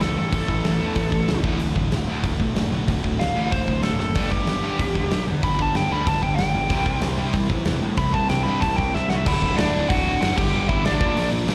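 Punk rock at a rowdy, upbeat 188 BPM in D major, cut from a longer live gig heard through the venue's PA, where a dark, nasal lead guitar with a parked wah, overdrive and slapback echo takes an up-front solo until 9.3 seconds over a growly, fuzzed electric bass, a big, mid-forward acoustic drum kit with a tight kick, crash cymbal, hi-hat, snare and drum fills, a very quiet scooped, bright distorted guitar riff that stops at 9.3 seconds, a very quiet sludgy overdriven guitar, and a double-tracked thick fuzz guitar in the background, all churning through chords from A to D, G and C before a closing turn to Bb at 11.0 seconds.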